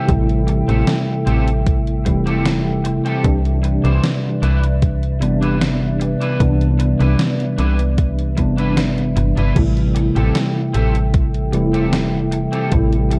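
Vaporwave with a woozy, melancholic mood, this short excerpt moves at an unhurried pace in a straight four, its harmony drifting from Am7 to Cmaj9 at 3.2 seconds and back to Am7 at 9.6 seconds. A mellow tine electric piano sits up front as the accompaniment, its clean tone dusted with ensemble chorus, 12-bit sampler grit and analog delay. High above it, a warbling, detuned pad holds sustained chords with a slow attack and long release, lo-fi and nostalgic under chorus and its own reverb. A bright, twangy electric guitar at the edge of break-up picks a riff through analog chorus, sampler grit, a low-pass filter and delay, sitting back in the mix. From 0.1 seconds a snappy FM bass with a metallic attack carries the low end, joined by a thumpy, overdriven electronic kick and a gated 80s drum machine whose snare, hi-hat and crash ring through gated reverb. The production is dark and warm, set in light digital ambience.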